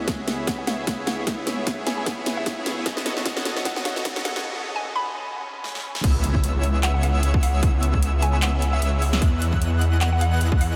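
Bittersweet and lush, this future bass excerpt at 151 BPM in C# minor rides a swung half-time feel through a reverb-soaked build-up, where a filter-swept bright polysynth riff with 12-bit grit and a mellow, hollow square pluck pump over a thick detuned saw bass, a hard-clipped up-front kick and a big-room kit with a huge snare and metallic hats, until a break, a very quiet riser and impact, and the drop at 6.0 s brings in an airy, dreamy sine lead with vibrato playing high arpeggios over chords moving from C#m7 to Emaj9.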